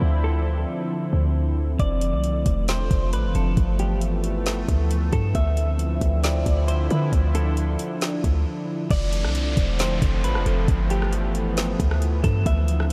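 Atmospheric cloud-rap with a half-time hip hop feel, this spacious, melancholic excerpt is cut from a longer piece and drenched in huge ambient reverb. An airy, detuned sawtooth pad holds slow-attack chords with chorus and sidechain pumping, while a deep, boomy 808-style sine bass with a noise layer sits up front beneath it. A clean, fingered electric guitar enters at 0.2 seconds with a compressed melody, softened by lush chorus, a low-pass filter and tape echo. At 1.8 seconds a smooth R&B drum kit arrives up front, with a soft kick, woody snare, rim click and metallic hats carrying a small-room character. After a brief break, an electronic downlifter sweeps in at 8.9 seconds, as the dreamy harmony keeps cycling through Dm9, F6 and G13.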